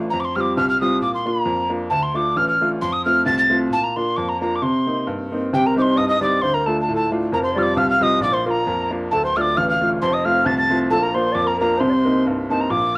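A lightly swung 2/4 pulse at 133 BPM drives this Celtic polka in C dorian, a spirited, lively piece with a dark edge, cut from a longer performance. A bright, brilliant upright piano carries the accompaniment from the opening, its woody, polished tone sitting present and up front across a deep span of the keyboard. A mellow wooden whistle takes the melody almost at once, airy and soft in attack with a breathy chiff and vibrato, its tone slightly unsteady and set at a distance yet still forward in the blend. At 5.5 seconds, as the opening section repeats, a reedy wooden flute joins beneath it with a second line, pure and crisp-edged with its own vibrato, sitting a little lower in the mix before dropping out at 12.2 seconds. The harmony cycles through Fsus2, Bb, Dm, F and Cm7, and the whole is wrapped in a wet studio reverb inside a dark, warm production.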